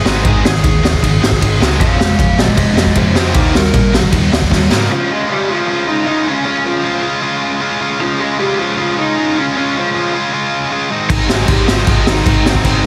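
A straight 4/4 punk rock drive at 155 BPM opens this rowdy, upbeat fragment from a longer piece, with a raw garage drum kit up front: a boomy kick, a high-tuned snare, crash and ride cymbals, all gritty and saturated with a rolled-off top, closing its first run with a fill at 4.5 seconds. A dark, lo-fi lead guitar through a small cranked amp takes a solo over the opening chords of Ab5, Fm and Eb, and carries its overdriven melody through the whole fragment. Beneath it, a tight, bright distorted guitar pounds out the main riff all the way through. Two very quiet overdriven guitars, one double-tracked, add riffs alongside it, while a growly, punchy picked bass sits in the background. The drums, bass and quieter guitars drop away at 4.9 seconds, as the harmony moves to Db, leaving the two guitars on their own until the full band crashes back in at 11.1 seconds after the return to Ab. The sound is dry and dense, with a loud, heavily limited modern master.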